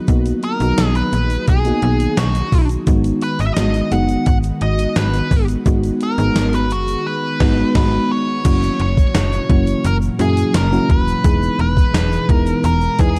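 A mellow, warbling FM electric piano with chorus and an airy, detuned pad in the background open this dramatic, urgent 1980s-style pop excerpt at 86 BPM, moving from Bmaj7 to G#m7. A snappy, metallic FM slap bass, a thumpy gated drum machine with a gated-reverb snare, crash, hi-hat and tambourine, and a grainy tube shaker join almost at once. A nasal, overdriven lead guitar with a parked wah and delay carries the melody, and after a band accent at 7.1 seconds the harmony shifts at 8.5 seconds to F#7 and Emaj7, all set in a dark production with digital ambience.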